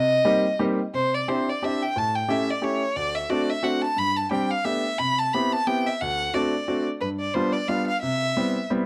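A dry, close recording with a 1970s studio feel puts a single bowed violin and an upright piano up front in this short cut from a longer musette piece in 3/4, charming and whirling with a light swing. The violin carries the melody with a rich, smooth vibrato, while the clear, woody piano accompanies with long sustain and a polished presence. The harmony moves from C minor seventh through dominant sevenths to settle on C major seventh. Both parts enter at the start, with the violin playing to about 8.7 seconds and the piano continuing to about 8.9 seconds.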